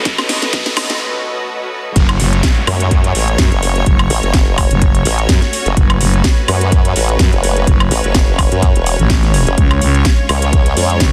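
A swung sixteenth-note groove in 4/4 drives this gritty, swaggering bass house cut, taken from a longer piece. It opens on a short build-up with a drum fill, a riser, a filter sweep and a brief break, as a lush, bowed symphonic string section holds vibrato-rich sustained chords and a cloudy, evolving granular pad with built-in reverb drifts in the background, both pumping against the sidechain. The drop lands at 2.0 seconds with a thick, growling FM bass pushed up front with overdrive, joined at 2.7 seconds by a wobbling, formant-filtered sawtooth bass treated with chorus and tube saturation, both pumping against the sidechain as well. A punchy, layered electronic kick sits forward while a tape-flavoured house kit adds a cracking snare, metallic hats and woodblock, and an electronic riser and downlifter murmur behind until 5.8 seconds. The harmony rests on F# minor before turning to C# near the end, all within a dense, heavily limited master with light reverb.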